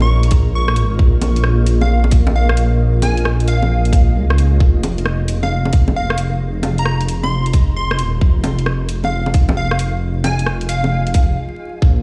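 A catchy, punchy square-wave lead with analog delay opens this wistful, rainy future garage excerpt over a cloudy, granular pad that pumps with the sidechain and a deep, rumbling detuned saw bass, all moving from Bbm7 to Fm7 on a swung groove. A layered garage kit of bongos, hi-hat and rim click sits beneath a tight, up-front electronic kick that enters at 0.3 seconds, and the excerpt reaches a stop at 11.4 seconds. The whole excerpt sounds as if played on a big system in a bare stone room, with vinyl crackle.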